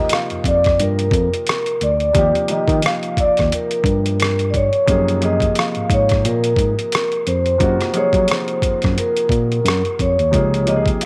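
A mellow, ringing vibraphone played with soft mallets carries the melody in this smooth, soulful neo-soul R&B excerpt, its slow motor vibrato and vintage, band-limited tone floating over a woody upright piano with long sustain. Up front, a gritty, pitched-down, compressed boom bap kit of thumpy kick, hi-hat and rim click sets a swung sixteenth-note feel, while a bright, barky tine electric piano, lightly overdriven through a combo amp, plays the bass line. Under light reverb, the harmony moves from Ebmaj9 to Gbmaj9 at 4.9 seconds and reaches Dbmaj9 at 10.3 seconds.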